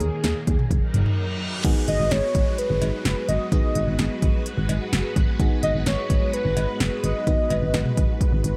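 A melancholic, nocturnal synth-pop piece at 128 BPM in G# minor opens with a punchy deep house drum kit, a round FM bass up front, a vintage string machine holding phased cello chords, and a velvety, warbling sawtooth lead that carries the melody with chorus and delay. A reverse cymbal and downlifter sweep in at 0.9 seconds ahead of a short break, and at 1.6 seconds a lush, dreamy FM electric piano with a soft pad layer joins as accompaniment as the harmony moves from D#sus4 and F#6 to G#m7. The dark production sits in light reverb, and the drums carry a small-room character.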